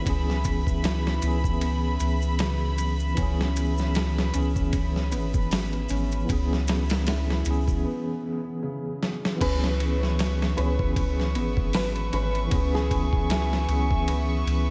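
A slow, swung trip hop groove at 77 BPM in 4/4 rests on a gritty, overdriven sampler-style drum kit with a thumpy kick, medium-tuned snare, hi-hat, ride and crash sitting up front, while a deep, round dub sub bass holds the low end beneath it. The mood is melancholic and smoky, set in C# minor over a C#m7 chord, with a clean tine electric piano carrying the accompaniment through tremolo, tape echo and 12-bit sampler grit. A felt-muted upright piano plays mellow, intimate arpeggios in the background with dub echo, and a clear studio violin section holds earthy bowed chords with light vibrato above. Bright maracas shake softly in the background until a break at 7.8 seconds, which closes with a drum fill. At 9.4 seconds a hammered santur enters with a shimmering, ringing melody trailed by dub echo, all inside a dreamy mix soaked in lush hall reverb.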